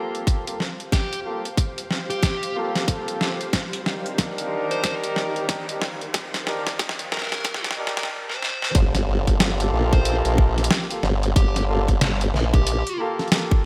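Bright, 1980s-style digital production with light reverb frames this swaggering, gritty glitch hop excerpt at 92 BPM in G minor, swung on the 16ths over harmony moving from Gm9 to Ebmaj7 and back, where a tight, tape-warm electronic kick and a pitched-down boom bap sampler kit of hi-hat and snare drive a filter-swept build-up beneath mellow jazz horn stabs carrying 12-bit grit and sidechain pumping, a blurred, evolving granular cloud pad, a dark overdriven lead guitar melody and a very quiet riser and impact, until a compressed, formant-swept wobble bass enters at 8.7 seconds just ahead of the drop at 8.8 seconds.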